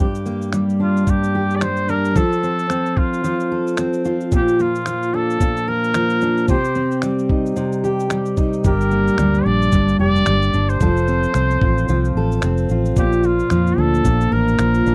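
A loosely swung 4/4 groove at 111 BPM, its sixteenths leaning lazily, carries this reflective, tender acoustic pop passage in G minor, cut from a longer piece. A full-bodied, fingerpicked steel-string acoustic guitar sits up front from the start, moving through Gm, F, Bb and Cm before circling back. Just after, a dusty sampler-style kit of finger snaps, shaker and a thumpy, compressed kick adds a gritty, tape-warm pulse. At 0.8 seconds a clear trumpet takes the melody, its vintage pop phrasing colored by light vibrato and scooped notes. A dark, round, foam-muted electric bass joins at 8.6 seconds to deepen the low end, all captured in a dry, close, 1970s-style studio sound with little reverb.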